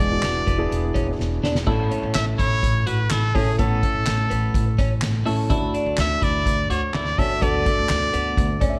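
A straight 4/4 pulse at 125 BPM drives this anthemic, warm piano-driven pop fragment in A major, tuned to A4 = 438 Hz and cut from a longer piece. A soft-mallet drum kit enters at 0.2 seconds with a boomy kick, fat snare, hi-hat, handclaps and crash cymbal in a big room, and a drum fill at 1.2 seconds leads from the opening E7 into a passage that moves between A and D. Up front, a bright trumpet carries the melody with scooped, present, pop-style notes. A dark, mellow grand piano accompanies with intimate, vintage character and audible action noise, adding a fill at 8.4 seconds. A clean, twangy twelve-string electric guitar plays a compressed, picked riff bathed in spring reverb, while a woody, growly pizzicato upright bass holds the low end. The whole mix sits in light reverb and has a worn, old cassette-tape quality with a warbly pitch drift.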